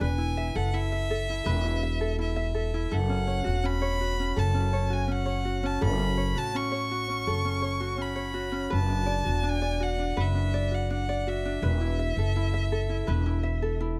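In a dry, close-sounding 14-second excerpt of carefree, sunny acoustic pop at 83 BPM in 4/4, a warm fingerpicked ukulele and a woody, up-front pizzicato upright bass with steel strings play over an Esus4, F#m and Bm progression, while a single bowed violin carries a clear, smooth, even melody with light vibrato until 13.8 seconds.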